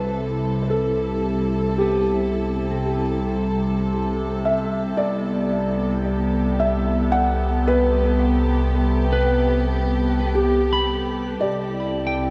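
Ambient in C major at a slow 56 BPM in 3/4, this serene fragment of a longer piece sets a soft, boxy felt-muted upright piano melody, bathed in shimmer reverb and tape echo, over sustained chords from a dark, intimate chamber string section played sul tasto with light vibrato, close and up front. Beneath them a round, deep sine sub bass fades in over the first 11.4 seconds, while a resonant sawtooth drone with moving overtones, chorus and ring modulation hums in the background. A slightly broken-up, fingered electric guitar enters at 1.8 seconds with warm arpeggios through shimmer reverb and tape echo, and a very quiet, glassy texture of drifting overtones appears at 12.0 seconds, all within an echo-heavy mix and a wet plate reverb.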